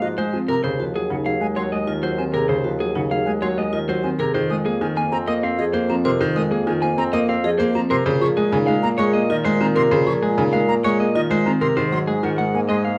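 Set in a dark, roomy studio reverb, this urgent yet meditative minimalist classical pattern piece in Eb dorian moves at 194 BPM in a straight 6/4, with a slightly broken-up, compressed, picked electric guitar carrying the melody over up-front baby grand piano accompaniment. An airy, soft-attack silver flute and a metallic, ringing vibraphone with slow motor vibrato spin arpeggios above a mellow, smooth-topped bassoon bass, all moving through Ebm11, Fm7 and Bbm9 harmonies in this warm cut from a longer work.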